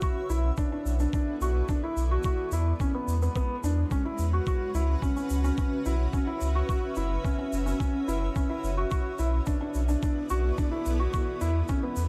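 A soft, mellow felt-muted upright piano plays a riff up front, trailed by tape echo, in this intimate, melancholic piano and strings electronica excerpt at 108 BPM in straight 4/4. A muffled, thumpy, pitched-down electronic kick and a quiet, brushy shaker with a rolled-off top keep time. A round sine sub bass enters at 0.3 seconds with sidechain pumping, and a blurred, detuned granular cloud pad, also pumping, holds sustained chords through its own reverb as the harmony moves through Bm, E, C#m and F#5 under light reverb and studio ambience.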